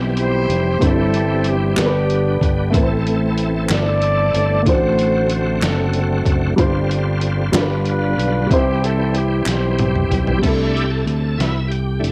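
Through a lightly reverberant home cassette recording, this reverent yet jubilant slow gospel fragment in 6/8 sets a dark, intimate baby grand with audible action noise in the background beneath shouting tonewheel organ chords with key click and slow rotary swirl, a round, punchy fingered electric bass up front, a horn section carrying the melody with light vibrato and a distant, roomy tone, and a muffled, pitched-down sampler-style drum kit with a thumpy kick, while crisp, close group handclaps join from 1.8 to 9.8 seconds, a drum fill arrives at 9.5 seconds, and the organ takes a brief solo from 10.4 seconds.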